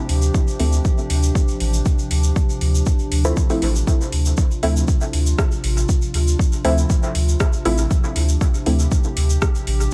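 A straight 4/4 pulse anchors this meditative dub techno fragment: an overdriven electronic kick sits up front, joined by a deep house kit of metallic hi-hats and rim clicks, also overdriven and trailed by dub echo. A grainy, bright egg shaker, likewise echoed, threads through the groove from 0.2 seconds. Beneath them, a round, soft sub bass holds the low end, pumping with the sidechain. A muted, detuned sawtooth chord stab enters at 0.6 seconds, with a filter sweep shaping its short plucks as chorus, phaser and dub echo smear each hit. Behind these, a warbling, nostalgic lo-fi pad sustains a Dm9 chord with a slow attack and long release, its chorus and built-in reverb also breathing with the sidechain. The parts sit in an echo-heavy digital ambience, making this a deep, meditative excerpt lifted from a longer track.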